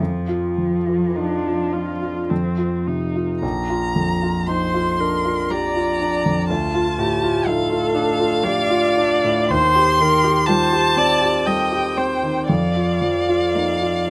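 Cello and grand piano open together at a slow 60 BPM in 3/4, the piano intimate and up front with long sustain and a trace of its own action noise, the cello a soft-attacked second line with vibrato and portamento. At 1.2 s the violin and viola enter, the violin carrying the lyrical melody high above with vibrato, expressive slides and a rich tone that sounds somewhat distant yet up front, while the viola fills in smooth, even accompaniment. This serene, romantic slow movement for piano quartet sits in Bb major and moves with uneven, rubato timing, the phrase restarting at 3.4 s. The harmony passes from Bb/F and F through Bb, Dm and Cm/Eb before settling back on Bb/F at 12.5 s. A moderate studio reverb gives the ensemble a modest sense of space in this section cut from a longer piece.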